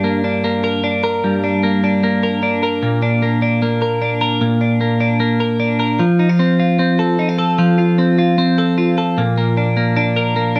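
A bright, clean twelve-string electric guitar opens this short indie pop excerpt on its own, picked with a twangy, compressed edge and set up front. A slapback echo trails each note, and a modest small-room reverb surrounds the sound, giving the part a youthful, nostalgic shimmer. In straight 4/4, the guitar moves through Gm, then Bb and F, ranging from G2 up to Bb4, with its tuning sitting slightly under standard pitch at A = 438 Hz. At 9.2 seconds the harmony settles back on Bb as a new section begins. The guitar plays until 10.6 seconds, where the passage is cut from the longer piece.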